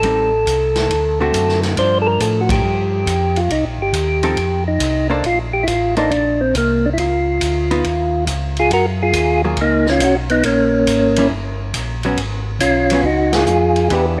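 Bluesy and greasy, this swinging soul jazz organ trio excerpt is led by a percussive tonewheel organ melody, clean and up front with third-harmonic percussion and a slow rotary speaker, while a second, rounder tonewheel organ carries the bass line with audible key click through its own slow rotary. A dark, compressed hollow-body archtop guitar comps with a clean, picked tone, and a distant, roomy big-band drum kit swings behind on ride, hi-hat, snare and a boomy kick with a rolled-off top. The band hits accents together at 2.4 and 13.3 seconds, the harmony shifts into a new section at 8.7 seconds, and light small-room reverb frames the whole performance.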